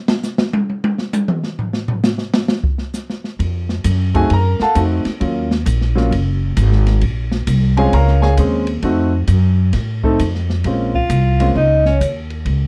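A dark, lightly reverberant small-group swing excerpt in Bb minor at 132 BPM sets a moody, cool tone, opening with a drum solo on a smooth kit with dark cymbals and a boomy kick until woody, thumpy pizzicato upright bass enters at 3.4 seconds and up-front grand piano follows over chords like F7b9 and Ebm7, before ringing vibraphone carries the melody and a bright, punchy alto saxophone with scooped notes adds a brief second line near 11.0 seconds.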